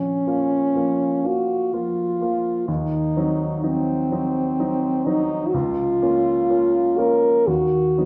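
Solemn and yearning, this brief romantic classical excerpt for French horn and grand piano moves at 63 BPM in a rubato 3/4, set in Bb minor and cut from a longer piece. Up front, the French horn carries the melody from C4 to Bb4 with light vibrato, a soft attack and a vintage tone, while the polished, present grand piano accompanies from Bb1 to F4 across all 8.1 seconds. A wet recital hall reverb surrounds the pair as the harmony passes from Bbm through Cdim/Eb and Bbm/Db to B/D# at 7.5 seconds.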